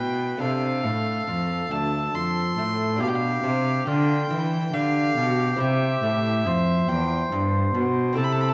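In a 3/4 at 70 BPM with a straight feel, this solemn, grave fragment of a baroque-style sonata movement in C major moves from Dm7 through G7/B to C. A bowed, gut-string violin carries the melody high above a distant oboe with light vibrato playing the second line, while a delicate, fingerpicked lute with double strings supplies the accompaniment. A rich, period-style cello holds the bass up front, all four parts heard throughout the 8.5 seconds and set in a wet recital hall with a 1.4-second reverb.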